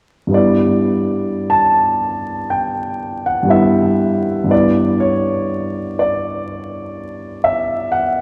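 The rhythm floats in a rubato 4/4, drifting between 49 and 63 BPM so the pulse feels loose and breathing. This is impressionist classical music for solo piano in G lydian, dreamy and luminous in mood, and it is a short fragment cut from a longer piece. A concert grand carries everything from 0.3 to 8.2 s, ranging from G2 up to A5, with a deep bass, an open, warm tone, long sustain and a close, up-front presence. It opens on a G6 chord, letting that bright, hovering harmony set the atmosphere. The piano sits in a wet church acoustic with a 3.5-second reverb tail, and a vinyl crackle gives the recording an aged surface.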